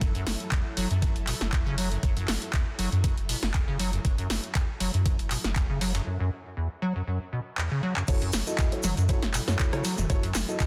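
Trippy and hypnotic, this acid house excerpt moves at 119 BPM in F# minor with a light 16th-note swing, built on a squelchy, resonant square-wave acid bass riff with a filter sweep, tube saturation, lush chorus and digital delay, riding over a round sine sub bass and lush vintage string-machine chords on F#m7 that pump under sidechain. A thumpy, up-front electronic kick plays alongside a punchy analog drum machine with handclaps, rim clicks, toms and crashes, while a gritty, very quiet sampler-style kit adds hi-hat, ride and snare in a large room. After a break from 6.1 seconds and a drum fill, the drop at 8.1 seconds brings in dark, boxy grand piano stabs with digital delay and a grainy tube shaker in the background, all under light reverb and a dense, heavily limited master.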